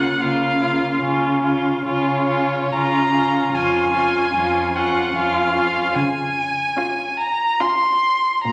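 In a rubato 3/4 at 73 BPM, this solemn, melancholic slow romantic movement for string quartet, cut from a longer piece, has all four players bowing con sordino across this 8.5-second excerpt, drifting between B-flat minor and D-flat major colours. A veiled first violin sings the melody up front with vibrato, over a dark, close second violin holding a single line and a viola giving accompaniment with light vibrato. The cello supplies the bass up front, its tone nasal with a soft attack and a smooth top, all set in a reverberant recital hall.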